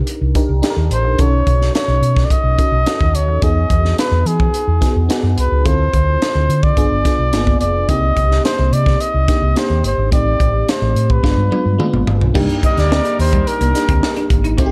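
A dark, polished studio sound with reverb frames this nocturnal, slick stretch of 1980s jazz-funk pop in a straight four. A close-miked flugelhorn with vibrato carries the jazz-style melody up front over glassy, bell-like FM electric piano treated with analog chorus, a crisp fusion kit with a high-tuned snare and punchy kick in a small, pumping room, and a round, amped hollow-body bass played with the fingers. After a drum fill at 11.2 seconds, a tight, vintage-toned horn section and a clean, picked semi-hollow guitar with ensemble chorus slip in behind at about 12.3 seconds as the harmony returns to Cm9.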